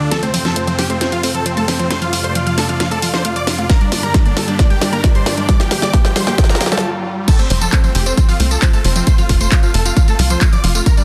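A dense, heavily limited modern master with light reverb carries this driving, emotional uplifting trance excerpt at 134 BPM, built over F and Gm chords. A huge, euphoric detuned supersaw lead sings the melody with delay and sidechain pumping, over a lush, warbling vintage pad, a nasal, filter-swept sequenced arpeggio, a bright unison pluck line in the background and very quiet electronic swells and risers. A tape-warm house kit with a cracking snare and low-passed cymbals fills through the build-up, a punchy electronic kick arrives up front at 3.7 seconds, and after a brief stop the drop hits at 7.3 seconds, with a dark, tight sequencer bass entering at 7.5 seconds.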